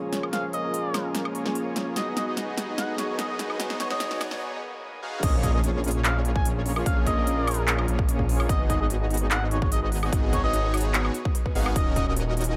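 Future bass in a half-time feel, dreamy and bittersweet, where a soft supersaw riff, a bell-like electric piano and very quiet, dark symphonic strings build under a veiled cup-muted trumpet melody and a big-room drum kit with crisp hats and handclaps until a riser and swell lead to the drop at 5.2 seconds, when a thick, detuned saw bass, a punchy overdriven kick and a round, thumb-piano-like synth pluck arpeggio arrive over Bbm7, Abm7 and Ebm7 chords.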